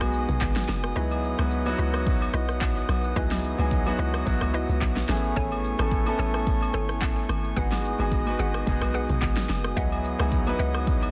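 A dense, heavily limited modern master with studio reverb frames this short, soulful amapiano cut from a longer piece, moving at 109 BPM in 4/4 with a light 16th-note swing in C# minor, tuned slightly under standard pitch at A4 = 437 Hz. An intimate concert grand sits up front, its audible action noise, deep bass and long sustain carrying the accompaniment through chords of G#m7, C#m11, Amaj7 and back. Beneath it, a hollow, bouncy log drum bass with a fast attack and mellow decay anchors the low end, while a layered deep house kit brings a deep kick, fat tape-warm snare, handclaps, rim click, shaker and toms; the kick drops out briefly between 1.0 and 2.1 seconds. In the background, a glassy, ethereal glass harmonica holds sustained chords with a slow attack and sidechain pumping. A woody, round synth pluck with a vintage warble adds stabs from 1.0 seconds, coloured by chorus and delay. 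Close, dry agogo bells and woodblock sit far back in the mix, lending an acoustic sparkle to the deep groove.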